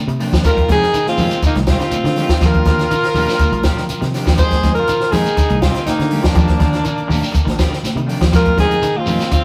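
A vibrato-laden alto saxophone with tape echo carries the melody up front, shadowed by a punchy, close-miked trumpet second line, in this funky, driving afrobeat fragment over alternating Fm11 and Ebmaj9 chords, where a dry cocktail kit with a high-tuned snare and tight kick, fill at 3.4 s, plays alongside round, foam-muted fingered bass, thick-skinned congas, grainy shekere, twangy picked guitar arpeggios with spring reverb and tape echo, and darker, slightly broken-up guitar stabs, captured in a rough rehearsal room with stone-room reverb.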